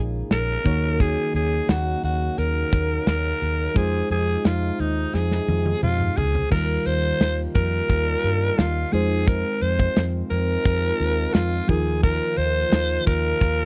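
A raspy, gritty alto saxophone with slapback echo carries the melody up front over a mellow FM electric piano treated with chorus and phaser, dark background brass chords, a round, punchy muted fingered bass and a tight modern drum kit that plays a fill from 5.1 to 6.5 seconds, giving this urgent, moody excerpt of 1980s-style pop at 87 BPM a dry, close small-room sound as its minor-seventh chords move from Bbm7 into an Ebadd9 section.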